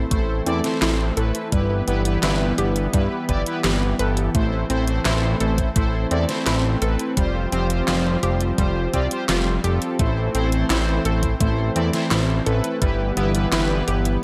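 A fat, saturated analog bass sits up front in this nocturnal, moody synthwave excerpt. Its detuned sawtooth tone is thick and evolving under chords that cycle through Am, Em/G and Fsus2. Above it, a smooth sawtooth pad holds sustained chords with chorus and sidechain pumping, while a bold, vintage synth brass plays brassy stabs with vibrato and a warbling, chorused edge trailed by digital delay. Tucked in the background, a bright, round analog pluck runs arpeggios through chorus and delay, its tone colored by ring modulation and a noise layer. A thumpy, tape-warm, sampler-style electronic kick anchors the straight 4/4 pulse until 13.0 seconds, alongside a layered pop kit of handclaps, hi-hat and a deep, overdriven snare dressed in gated reverb, all set in light reverb and digital ambience.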